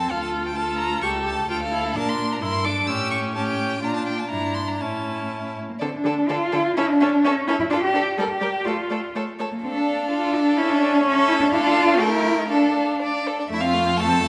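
In a quick 2/4 at 116-131 BPM with a rubato feel, this urgent, dramatic classical-period string quartet movement in D minor is cut from a longer piece. A rich, focused first violin carries the vibrato-laden melody high above a smooth, even second violin line, while an expressive viola with portamento fills the accompaniment and a warm, up-front cello anchors the bass. The scoring stage reverb lends a moderate bloom, and a new section begins at 5.8 s before the harmony settles on F at 13.5 s.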